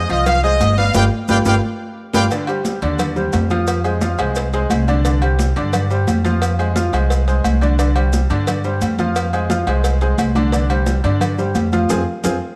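A straight, driving salsa groove in four is carried by congas with a thick, high-tuned skin, grainy maracas, a round, low-tuned cowbell, and ringing agogo bells and timbales tucked into the background, all starting just after the opening. This fiery fragment of a longer piece opens with a brilliant, up-front trumpet section playing the melody with light vibrato in a pop style, sounding only until about 2.2 seconds. Beneath it, a bright grand piano with a worn tone and short sustain plays the accompaniment throughout. A woody, dark upright bass, plucked pizzicato on steel strings, sits up front in the low register. A drum fill and band accent mark the passage from 1.0 to 2.3 seconds and again at 11.9 seconds, with the harmony moving between minor and suspended chords over light reverb and small room ambience.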